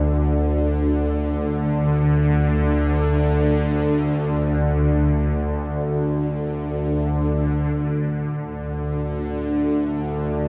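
A cavernous cathedral reverb with a 6.5-second decay surrounds this dark, ominous piece of ambient drone music, cut from a longer work and unfolding in free time with tuning set to A4 = 442 Hz. From the first moment a bowed-like drone sits up front, spanning D2 to D3 with a string-like, tense sawtooth tone, detuned unison voices, a noise layer and a slow attack that sustains into a long release. Its bright edge is coloured by vibrato, a phaser and its own built-in reverb. At 7.8 seconds a deep, moody analog pad enters very quietly, holding a D5 chord between A3 and D4 with a shadowy blend of detuned sawtooth, triangle and a sub octave, softened by chorus. Both parts sustain together until the close at 10.5 seconds.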